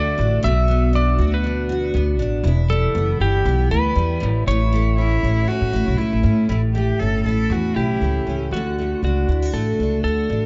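A clean, dark lap steel guitar carries the melody from the start, played with slide and volume swells through a digital delay. Beneath it sit a full-bodied, double-tracked picked acoustic guitar and a woody pizzicato upright bass, all up front in this easy-going, heartfelt acoustic pop excerpt at 119 BPM in D major with a gentle 16th-note swing. From 5.0 to 8.5 seconds a single bowed cello adds an intimate second line, played sul tasto with a soft attack and light vibrato, as the chords move from Bm through Em and A before settling on D at 8.5 seconds, set in light reverb and a warm production.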